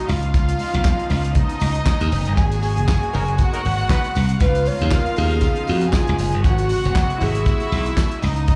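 A short cut from a longer disco piece opens with a mellow, wooden-headed alto flute and two bowed string sections, a nasal, gut-toned chamber group carrying a second line over a smooth-topped studio section holding chords in the background, both bathed in plate reverb. At 0.1 seconds a bright, punchy slap bass arrives up front with a dry 70s drum kit built on a fat snare, tight kick, hi-hat and handclaps, while very quiet low-tuned congas and a jingly, band-limited tambourine fill in the groove. The tempo sits at 118 BPM in 4/4 with a light sixteenth-note swing, giving a sultry yet driving feel in G# dorian as the harmony moves from C#9 to G#m9 and back, ending on G#7b9. A band accent lands between 2.4 and 4.4 seconds, during which a horn section, with light vibrato and tape and slapback echo, drops brief stabs in the background. The airy flute returns at 4.4 seconds with an unsteady, vibrato-laden melody, and the whole performance comes across as a live gig heard through a venue's PA, with a touch of club reverb.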